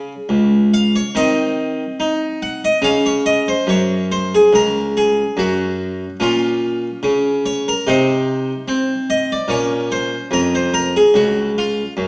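Grave and solemn, this baroque-style suite movement unfolds at 72 BPM in 4/4 with a rubato feel, tuned to A4 = 444 Hz and cut from a longer piece. A solo Italian-style harpsichord, plucked and full with a brilliant edge from its three sets of strings, sits up front and ranges from Db2 to Gb5, moving through Ebm6, Dbadd11, Bbm and Cmadd9 harmonies. A wet recital hall reverb with a 1.4-second decay surrounds the 12.1 seconds of playing.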